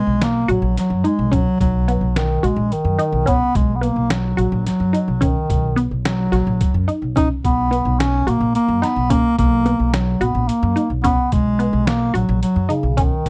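Moving in a straight 7/8 at 216 eighth-note beats per minute, this bright, intricate progressive instrumental excerpt in B major rests on a Bmaj7 chord, with a breathy, vibrato-laden bass clarinet carrying a jazz-style solo melody up front, a squelchy, detuned sawtooth blip pluck spinning arpeggios through chorus and phaser, a woody pizzicato upright bass holding down the low end, and a gritty, compressed, pitched-down trip hop sampler kit of thumpy kick, snare and hi-hat joining at 0.2 s, set in a dry, close 1970s-style studio sound.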